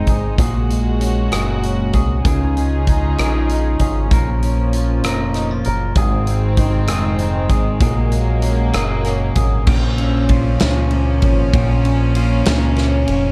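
Clean, twangy electric guitar, soft bowed strings and envelope-filtered fingered bass open this dramatic, aching six-eight pop ballad in Bb minor at 65 BPM, with a huge arena drum kit arriving at 0.1 seconds carrying a fat snare, punchy kick, crash, ride, hi-hat and rim clicks up front. The sul tasto string section floats distant and pure behind the compressed guitar as the harmony moves through Gbadd9/Bb, Dbadd9, Bbm and Ab. The music shifts into a new section at 9.7 seconds landing on Bbm, all within a dark, warm studio reverb, in this excerpt cut from a longer piece.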